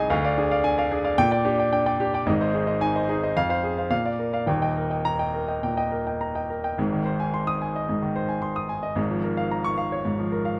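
Closely miked with light reverb and a detailed, up-front sound, this short excerpt of a heroic, sparkling classical virtuoso piano study features a solo baby grand piano of natural tone and short sustain, played with rubato in 4/4 at 103-113 BPM, ranging from Eb1 to Eb6 and moving from Eb major to Ab major at 6.8 seconds.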